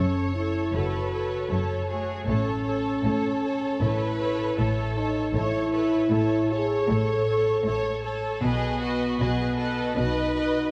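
A mellow, up-front French horn section holds sustained chords through this relentless, heroic cinematic excerpt, moving from F#m to A and arriving on B at 8.4 s. Above it, two lush violin sections with vibrato carry a smooth melody and a focused second line, while a rich viola section fills the middle. Expressive, soft-attack cellos and dark, woody double basses anchor the bass, and the ensemble sits in a wet concert hall reverb.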